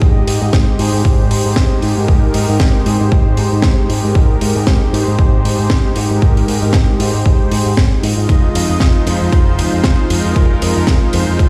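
Heard through a big sound system in a bare room, this short nu-disco cut carries a large studio reverb that gives the groove a roomy, open sheen. The mood is groovy and sunny, moving at 116 BPM in 4/4 with a light swing on the sixteenths, set in Ab major and sitting on Abmaj7 before shifting to Fm7 at 8.3 seconds. A punchy, layered electronic kick anchors the beat from the start. It is joined at 0.3 seconds by a tight, dry funk kit with bright hi-hat and ride cymbals and a high-tuned snare. A picked electric bass runs through an envelope filter, sounding direct and amped in its low register. Above it all, a smooth, detuned sawtooth analog pad with a slow attack holds sustained, mellow chords, colored by chorus and analog delay and pumping through sidechain compression.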